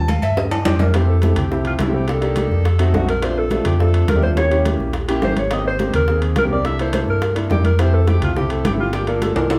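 A vintage-toned concert grand piano and a dark, round, up-front fingered electric bass open this sunny, danceable Afro-Cuban jazz excerpt at 210 BPM in F major. The bass is amped and sits forward, while the piano is intimate with audible action noise. A percussion section of agogo bells and timbales, soft-handed congas, and very quiet high-tuned cowbell and bongos joins almost at once, with a drum fill at 0.4 seconds, before a mellow, breathy alto saxophone enters at 0.7 seconds as the distant jazz soloist, its subtone and scooped notes carried over rich harmonies like Fmaj7, F7b9 and Abmaj9 in a wet club reverb heard from further back in the room.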